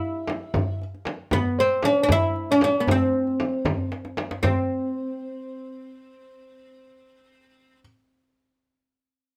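Moving in a straight 6/8, this stately Persian modal ensemble piece puts a woody, plectrum-plucked fretless oud with double strings up front on the melody, over a dark, felt-muted upright piano that traces a mellow second line in the background with audible action noise, while a deep, saturated tombak and a small-room frame drum played with soft hands carry the percussion until a drum fill at 3.9 seconds leads to their stop at 4.7 seconds, within a moderate studio reverb.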